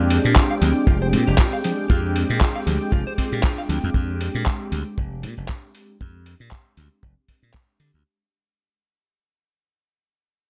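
Nu-disco at 117 BPM in F dorian, groovy and cosmic, this eight-second excerpt from a longer piece rides a lightly swung 16th-note feel over a single Fm69 chord while fading out throughout. A dry, tight acoustic kick and a bright, punchy slap bass sit up front, joined by a gritty, overdriven sampler-style kit of handclaps and hi-hat that sounds re-recorded in a small room. Brassy, round synth brass with vibrato and a thick, warbling unison pad both pump against the sidechain, while a dark, slightly broken-up electric guitar riff drifts in the background from 0.4 to 3.8 seconds, all set in an echo-heavy mix with light reverb.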